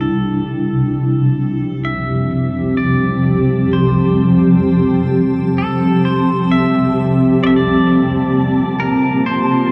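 Ambient music with a weightless, peaceful mood, cut from a longer piece and unfolding in a slow, straight 4/4. A granular cloud pad sits up front, holding sustained chords across a full-bodied, blurred span, its slow attacks and long releases evolving under a moving notch and its own reverb. Over it, an electric pedal steel guitar carries the melody, fading in from the start. It is played with fingerpicks, slide and volume swells, clean and twangy in tone, compressed and trailed by tape echo. The harmony rests on Fmaj7/C before shifting to Bbmaj7 at 7.4 seconds, and at 7.7 seconds a breathy, wind-like tuned noise texture drifts in far in the background on a single high note. A huge, wet reverb wraps the whole dark, warm production in a hazy wash.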